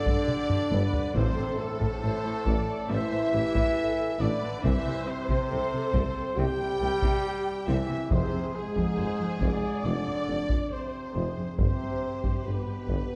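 Dramatic and epic, this excerpt of cinematic orchestral film score moves at a steady 69 BPM in A minor, with close, dry taiko struck with heavy sticks driving from 0.1 s and a drum fill from 0.3 to 1.2 s, while articulate timpani on hard mallets sounds from 1.2 to 2.4 s. Lush violins carry the melody with focused vibrato over a second violin line and expressive viola accompaniment with portamento, as dark, distant French horns and mellow, vintage trombones hold sustained chords and mellow trumpets punctuate with tight stabs. Woody cellos, double basses and a very quiet tuba with light vibrato anchor the bass through the chords G5, A5, C5, Fm and G, all set in a moderate concert hall reverb with a dark production.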